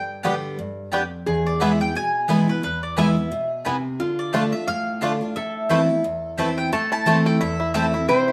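Driving and lonesome, this short bluegrass cut in A minor swings along at 176 BPM, with an up-front, round mandolin carrying the melody over a nasal, metallic lap resonator guitar sliding a second line and a bright, full-bodied jumbo steel-string guitar picking the accompaniment. From 0.2 seconds a twangy, percussive fingerpicked banjo joins on the melody while a second, woody mandolin adds bright stabs, moving through G, E and Dm to Amadd9 before settling on Am at 6.7 seconds. The ensemble sits in a wet studio reverb, and lossy compression artefacts are audible.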